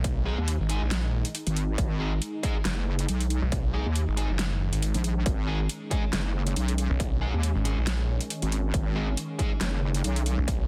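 This short cut from a longer heavy wobble dubstep track opens with everything but the guitar and wobble bass already in motion: a distorted electronic kick sits up front alongside a snarling, growling saw bass, while a dubstep kit adds a huge snare and metallic hi-hats in a small room. The fuzz guitar enters at 0.3 seconds with picked, double-tracked stabs carrying tape echo, and the square-wave wobble bass arrives at 0.4 seconds, chorused, overdriven and loud in the mix. Behind them, a lush supersaw pad holds sustained chords in the background, its slow attack colored by phaser, sidechain pumping and a low-pass filter. The swung, half-time feel in 4/4 gives the menacing groove a lurching weight, with the two basses dominating the low end. The master is dense and heavily limited, wrapped in digital ambience for a thick, modern sound.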